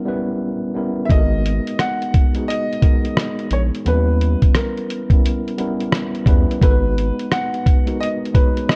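A dark, dry production frames this melancholic, reflective lo-fi hip hop excerpt in G# minor at 87 BPM, swung on the sixteenths, opening with a worn, slightly out-of-tune tine electric piano, lightly overdriven as if through built-in speakers, playing a rootless D#7b9b13 alone. At 1.1 seconds a woody upright piano melody enters over G#m9 and D#7b9b13 chords, joined by a muffled, compressed, pitched-down sampler-style drum kit of thumpy kick, hi-hat and rim click sitting up front. A round, deep analog bass with a fast attack and sustained tone holds the low end until 7.1 seconds.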